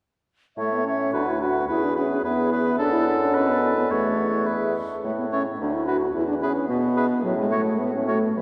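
This quick, classical-period movement for wind quintet moves at 108 BPM in 2/4 with a lively, graceful mood and a flexible, rubato feel. All five players enter together at 0.6 s: an airy, hollow concert flute carries the melody from the background, its tongued notes touched with vibrato and rolled-off highs, while a warm oboe with light vibrato sings a second line beneath it. Up front, the French horn gives close-miked accompaniment with vibrato and a soft attack, joined by a clear, close-miked clarinet set further back. The mellow bassoon anchors the bass with light vibrato and sounds distant and roomy, even though it sits prominently in the mix. The harmony moves from A through Bm/D, E, D/F# and B7/F# before settling back toward A and closing on F#m/A near 7.2 s, all washed in a dark cathedral reverb with a long decay. This brief passage is cut from a longer piece and ends at 8.4 s.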